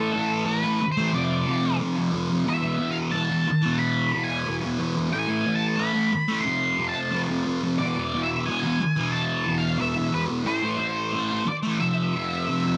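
A straight 4/4 rock groove at 90 BPM drives this hypnotic, trippy passage in E phrygian dominant, tuned to A4 = 438 Hz and cut from a longer piece. Up front, a thick, warm, double-tracked fuzz guitar plays a low, picked riff through distortion and phaser, moving through chords such as A5, F5, Esus4 and E5. Above it, a dark octave-fuzz lead guitar carries the picked melody through distortion and tape echo, and both sit in light reverb with a digital ambience.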